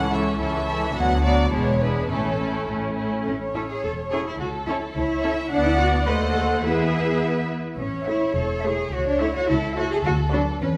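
A quick classical-period movement for string orchestra in A major, this cheerful, graceful fragment moves at 106 BPM in a straight 2/4, tuned slightly low with A4 at 436 Hz. The first violins carry the melody with a lush, smooth and even tone, sitting close in the sound, while the second violins trace a more distant, expressive second line marked by vibrato and portamento. The violas fill in the accompaniment from further back, and the cellos give a focused bass line with a smooth top, joined by double basses that sit up front with a warm, smooth and even body. All five sections play together through the roughly 10.8 seconds, framed by a wet concert-hall reverb. The opening phrase returns at 3.3 s, and its harmony passes through a diminished chord at 6.1 s before settling back home, suggesting a brief cut from a longer piece.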